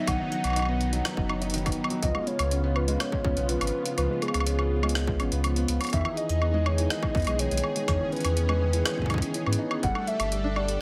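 A lightly reverberant mix carries this eerie, melancholic IDM excerpt at 123 BPM in a straight 4/4, moving through B, C#7, Emaj7 and Gsus2. A warbling, detuned lead with vibrato, chorus, delay and cassette-tape colour sings the melody over a smooth sawtooth pad and soft arpeggios from a felt-muted upright piano whose action noise stays audible, while a deep, round sine sub bass sits up front. A distorted electronic kick stops at 9.9 seconds, and a gritty, pitched-up sampler-style jungle kit of hi-hat, rim click and woodblock adds overdriven, compressed texture.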